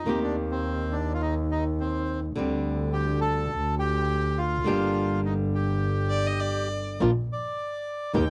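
A dry, close studio sound with a 1970s character and light reverb frames this brief, passionate and melancholic tango fragment in G minor, taken from a longer piece and moving at 104 BPM in 4/4 with a rubato feel. A reedy, bright bandoneon carries the melody up front, ranging from C4 to G5, while a fingerpicked flamenco guitar with fresh strings supplies warm acoustic accompaniment. Beneath them, a single bowed double bass played sul tasto gives an intimate, soft-attacked bass line with light vibrato and an airy bow. At 6.1 seconds a bowed violin enters briefly with a second line between D5 and Eb5, its tone nasal and focused with a smooth top and vibrato, before dropping out at 7.0 seconds. The harmony moves through Cm7/Eb, D7sus4, Dmadd11 and Gm before turning to Bb as a new section begins at 7.0 seconds.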